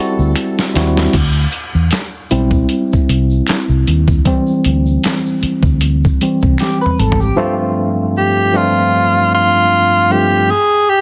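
A worn, slightly out-of-tune tine electric piano with light overdrive takes a solo from 1.1 to 7.4 seconds in this introspective, soulful R&B and neo-soul excerpt at 77 BPM, over a gritty, pitched-down boom bap sampler-style drum kit with a thumpy kick and drum fills, a dark, foam-muted vintage fingered electric bass, an egg shaker with finger snaps, and a brief twangy electric guitar line with analog chorus through a small old amp. After the harmony moves from D9sus4 to G9sus4 at 7.4 seconds, a breathy tenor saxophone with vibrato and scooped notes returns at 8.2 seconds, all set in digital ambience and a dense, heavily limited modern master.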